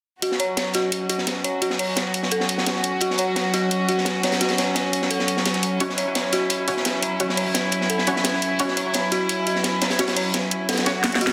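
Tense and mechanical, this dark, technical drum and bass runs at 172 BPM in a straight 4/4, a fragment cut from a longer piece and built around an F#5 chord. A clear, floating string section holds soft-attack sustained chords up front, while an eerie, inharmonic synth bell with chorus, delay and a low-pass filter spins decaying arpeggios above it. Two drum kits drive the groove together: an overdriven electronic kit with a cracking snare and bright hats, and a gritty acoustic breakbeat kit with a high-tuned snare, saturated tone and rolled-off top. From 5.8 seconds a bold, punchy sawtooth stab resembling an orchestra hit, detuned and ring-modulated with a filter sweep, adds short bright accents in the background. An electronic swell enters at 10.8 seconds as a drum fill lands at 11.0, all set in a lush hall reverb within a dense, heavily limited modern master.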